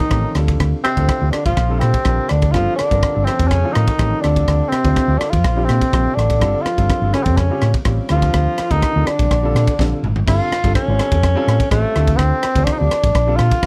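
Driving and slick, this electric jazz fusion excerpt moves at 124 BPM in a straight 4/4, cycling through Dm7, Bbmaj7, Gm7 and A7alt changes, cut from a longer piece. A mellow tenor saxophone carries the melody up front with a soft, vintage attack, while a second, breathy tenor saxophone sits in the background with vibrato, scooped notes and a whispered, intimate tone until it stops at 10.0 seconds. A hollow-body short-scale electric bass played with the fingers gives a dark, round, amped bottom that sits prominently in the mix. The crisp fusion drum kit, recorded in a small pumping room, brings bright cymbals, a high-tuned snare and a punchy kick, and a drum fill at 9.8 seconds leads into the repeat of the main passage. A smooth, vintage grand piano fills out the harmony in the background, all set in light reverb.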